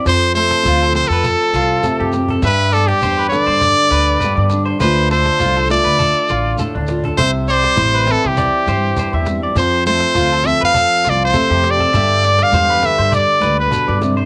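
A brilliant, forceful trumpet sits up front with vibrato and scooped notes, carrying a joyful pop-style melody through this warm highlife guitar band excerpt. Beneath it, a fingerpicked flamenco guitar with fresh strings and a twangy, slightly broken-up electric guitar playing picked arpeggios share plate reverb, with the electric also trailing analog delay, while a woody pizzicato upright bass anchors the harmony. In the background a dry cajon with faint snares and a grainy, very quiet shekere keep the groove, bright high-tuned congas join at 7.2 s, and the whole home cassette recording carries a moderate booth ambience.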